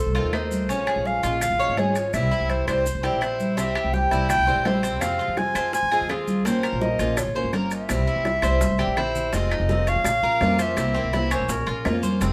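A close-miked clarinet sings a classical-style solo melody up front over bright, metallic tres arpeggios and a dark, growly pizzicato upright bass, joined at once by a boxy picked swing-style acoustic guitar, thick-skinned congas, grainy maracas, ringing timbales and very quiet woody claves, with round low-tuned bongos entering at 3.6 seconds and a drum fill at 8.3 seconds leading into a new section of this danceable, warm Cuban son and guajira fragment in F minor at 167 BPM, set in moderate studio reverb.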